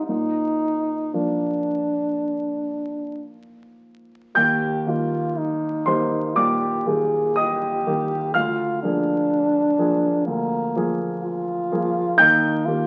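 In a flexible 4/4 with free rubato, this romantic classical duo unfolds at a slow, unhurried pace and carries a tender, warm mood. A French horn sings the melody in a modest middle register, its tone touched by light vibrato and sounding distant and roomy despite sitting up front. A grand piano supports it throughout, with a present, polished voice and short sustain that reaches from deep bass notes to a high treble sparkle. Moderate stone-room reverb surrounds both instruments, and the sound carries the crackle of a very old 78 rpm record, lending a faded, nostalgic patina. The passage opens on one idea and shifts to a new phase at 4.4 seconds, settling back home as this warm fragment of a longer piece breaks off near 12.9 seconds.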